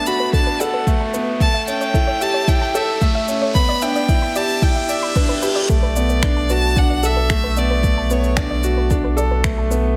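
A moderate concert hall reverb gives this cinematic, melancholic piano and strings electronica a spacious sheen, with a clear concert grand piano up front playing a smooth, vintage-toned riff through tape echo across the whole 10-second cut from a longer piece. At 112 BPM in 4/4 with a straight feel in B minor, a close, bowed solo violin carries the melody with a smooth, even tone and vibrato, moving over Bm7, A7 and Em7 chords. Underneath, a soft, round pluck sits in the background with dark, warbling arpeggios, coloured by chorus, tape echo and sidechain pumping, while a filter sweep on it shapes the build-up alongside an electronic riser and, from 4.6 s, a reverse cymbal. A deep electronic kick drum, re-recorded in a large room, sits up front alongside layered electronic shaker and finger snaps. At 5.7 s the drop lands on Bm7 as a round, sine-like sub bass enters on B1, given tube saturation and sidechain pumping.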